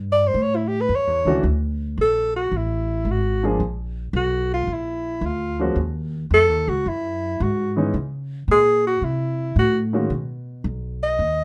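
Swinging eighths at 111 BPM in 4/4 carry this relaxed jazz excerpt, where a woody, thumpy pizzicato upright bass and a breathy alto saxophone with subtone, light vibrato and scooped notes sit up front, joined at 1.3 s by an intimate grand piano with audible action noise that comps until 10.1 s, all softened by light reverb.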